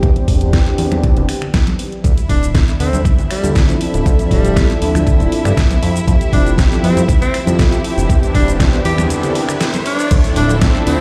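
A straight 4/4 groove at 119 BPM drives this sleek, cosmic nu-disco cut in D dorian, built on an up-front, knocking electronic kick with overdrive and a layered pop drum kit of deep snare, hi-hat, finger snaps, shaker and crash cymbal, both re-recorded in a small room. A fat, detuned sawtooth bass with a fast attack anchors the low end, while a smooth, warbling analog pad with chorus, tape echo and sidechain pumping carries a filter sweep through the opening 10.1 seconds. Distant congas, tambourine and bongos enter in the background at 0.9 seconds, and a lush, bowed violin section with vintage 12-bit sampler grit and its own pumping joins with sustained chords at 2.0 seconds. Just after, a bright, close-miked tenor saxophone takes the solo melody with vibrato and dub echo. The chords move from Cmaj7/E through Dm7 and Fmaj7, and a riser builds into a brief break before Dm7 returns, all set in a large studio reverb that sounds like a big system in a bare room, cut from a longer piece.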